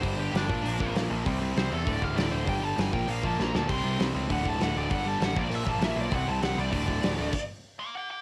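A nasal, dark lead guitar with a parked wah and overdrive solos through this rowdy, energetic punk rock clip, cut from a longer piece, over a G5, Bb, C, D5 progression. Beneath it, a bright overdriven rhythm guitar, a sludgy distorted guitar set in the background, a direct picked electric bass and a loose, up-front acoustic kit with a tight kick, medium-tuned snare and pumping small-room sound drive hard, with a drum fill at 3.4 seconds. The band stops around 7.3 seconds, with the drums trailing off by 7.4, leaving the lead guitar alone until 8.2 seconds, all captured as a home cassette recording with little reverb and some tape grit on several parts.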